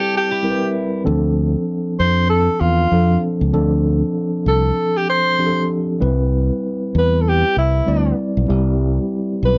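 A warm, vibrato-laden alto saxophone sings a romantic melody over mellow, clean tine electric piano accompaniment at the opening of this smooth soul excerpt, while a compressed hollow-body guitar riff with phaser sounds only until 1.0 seconds. A bright, direct fingered electric bass enters at 1.1 seconds as the harmony moves from Cmaj7 to Dm7, returning to Cmaj7 at 6.0 seconds. The dry, close 1970s-style studio sound keeps the bass and piano up front, with the saxophone carrying a roomy, distant air.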